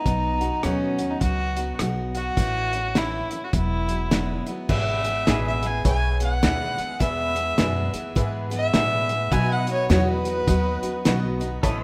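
Honky-tonk and classic country in E major at an easygoing 104 BPM with a swung 4/4 feel, this heartfelt excerpt opens with a dark, nasal fiddle carrying the melody over bright picked dreadnought acoustic guitar, woody pizzicato upright bass and an up-front, cloth-damped drum kit with a fat snare, dark cymbals and a gritty, muffled lo-fi character. At 4.7 seconds the fiddle moves into a solo as a jangly, metallic tack piano joins in the background, followed at 5.3 seconds by a twangy, clean pedal steel guitar playing sustained chords with volume swells. A moderate recital-hall reverb gives the small band a sense of space.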